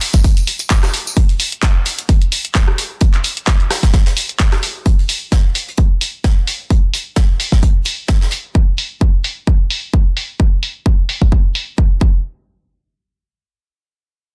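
The sound is dense and heavily limited, a modern master with audible lossy compression artefacts in a studio ambience. This gritty, aggressive house groove, cut from a longer piece, runs in 4/4 with a light swing on the sixteenths. A punchy, layered electronic kick drum sits up front from 0.1 s as the loudest part, tape-tinged and re-recorded in a small room. Beside it, a produced house drum kit of handclaps, hi-hat and rim click, also up front, has a low-pass filter dulling its hats, snare and room, and it stops at 11.7 s. Beneath them, a quieter acoustic jazz brush kit plays hi-hat and a medium-tuned snare in its own cramped space, its hats pumping with sidechain and its snare and room thinned by a high-pass filter until 8.4 s, while a jingly, close and dry tambourine adds a bright flash only in the opening second.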